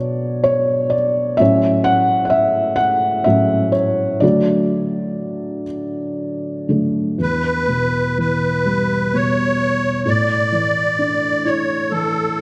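Longing and mournful, this short cut from a Celtic folk slow air drifts at 62 BPM in a rubato 3/4 with uneven beats, as a soft, felt-muted upright piano, dark and intimate with audible action noise, plays alone over Bm, A6 and D until a reedy, shimmering musette accordion, close-miked and up front, takes the melody at 7.2 seconds over Em and Asus4, all set in a long concert hall reverb.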